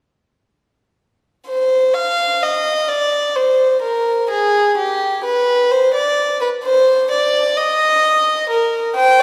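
A reedy, gut-string violin in period style carries the second line of this contemplative yet driving baroque-style fugue for string quartet from 1.5 seconds, while a second, slightly louder violin touches a single high melody note at 9.0 seconds, both bowed close and up front with an airy, nasal edge inside the long, wet reverb of a church or concert hall, in a fragment cut from a longer piece.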